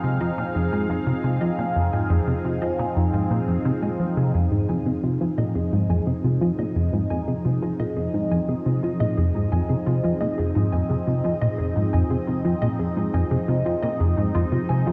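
Cosmic and expansive, this excerpt of ambient, sequencer-driven space music sets a swirling, evolving sawtooth pad, colored by phaser, chorus and shimmer reverb, beside a punchy, funky analog bass riff with a dark moving notch and delay, while a lo-fi, mellow square-wave pluck plays detuned arpeggios that fade in across the full 14.9 seconds, the whole passage resting on a single Fm7 chord within a wet concert-hall reverb and the warbly pitch drift of worn cassette tape.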